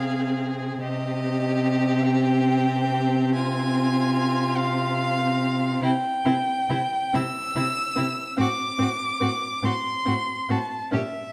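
A close, up-front lead violin carries the melody of this slow, melancholic and yearning romantic movement for string quartet, singing in a high register between Eb5 and E6 with a warm, smooth vibrato. Beneath it, a second violin with a rich tone carries a second line, while a viola with a smooth top fills the accompaniment, and a cello, also placed up front, anchors the bass. Each of the four parts is played by a single bowed player with even, smooth vibrato. The music moves at 48 dotted-quarter beats per minute in 6/8 with a flexible rubato feel, tuned to A4 = 438 Hz. The harmony rests on F minor over C before shifting to a rootless F# diminished chord over A at 8.4 seconds, and the lower three parts stop at 11.0 seconds, leaving the melody violin to finish at 11.3 seconds. A moderate recital hall reverb gives this fragment of a longer piece a natural sense of space.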